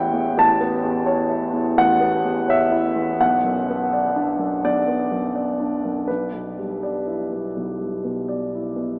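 This short cut from a longer piece sits in a vast, echoing space, drenched in a wet cathedral reverb with a 6.6-second tail, and filtered through an AM radio sound. It is neoclassical piano and strings music in 4/4 at 84 BPM, played with a rubato feel and tuned to A4 = 439 Hz, carrying a longing, melancholic mood. A warm concert grand piano sits up front as the accompaniment, ranging from A1 to A5 with a deep bass register. In the background, a soft dub sub bass hums between A1 and B1, its round, triangle-and-square-wave tone starting quickly and then sustaining. The harmony moves from Aadd9 to Bm at 3.2 seconds and settles on Em7/B at 6.1 seconds, leaving the phrase suspended in the reverberant haze.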